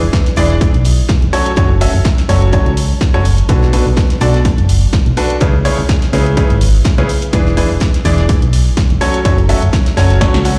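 Energetic and soulful, this piano house excerpt moves at 125 BPM in 4/4 with a light 16th-note swing, cycling through E7, F#m, Bm7 and C#m7. A round, dark FM bass with a fast attack and decaying notes anchors the low end from the start, pumping against the sidechain. An overdriven electronic kick and a punchy analog drum machine carrying hi-hat and snare drive the groove, both re-recorded in a large room. Tucked in the background sits a damped 70s kit, dry and mid-forward with a fat snare and a rolled-off top, its hats, snare and room filtered. Up front, a bright baby grand piano plays the riff from 0.4 seconds, worn and intimate with audible action noise and short sustain, treated with tape echo and sidechain pumping. A drum fill closes the passage at 10.2 seconds, and the whole mix carries the sound of a big system in a bare stone room.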